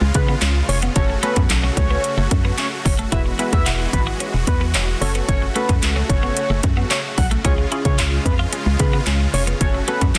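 Energetic yet bittersweet, this dance-pop excerpt at 111 BPM in F# minor moves through C#, F#m and Eadd9 chords, with a punchy house drum kit of kick, handclaps and metallic hi-hats and a hollow, organ-like FM bass sitting up front, while huge, lush supersaw chords pump against the sidechain alongside a twangy, chorused twelve-string electric guitar riff, a fat analog lead melody with vibrato and tape echo, and a funky polysynth comp that enters at 1.0 seconds, all in a dense, heavily limited modern master with light digital ambience and a faint mains hum.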